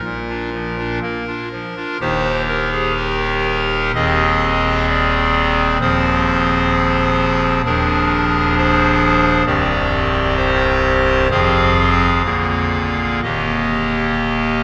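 A Bb chord on a pipe organ's clarinet stop opens this short, reverent excerpt from a longer chorale-style classical piece, moving to Eb major at 2.0 seconds. The solo organ voice has a hollow, reedy character with a baroque voicing and a crisp chiff at the start of each note, and it sits up front in the sound. The tempo is around 64 BPM in 4/4, but the beats are uneven and the pulse breathes with rubato, giving the music a serene, unhurried feel. The harmony moves over a held Eb in the bass through Ab, Fm7 and Bb7, then passes through Cm, Fm and Bb7 before settling back on Eb at 13.2 seconds. The organ spans a broad range from C1 up to F5, and a cathedral reverb with a 5.0-second decay surrounds each chord in a long, resonant wash.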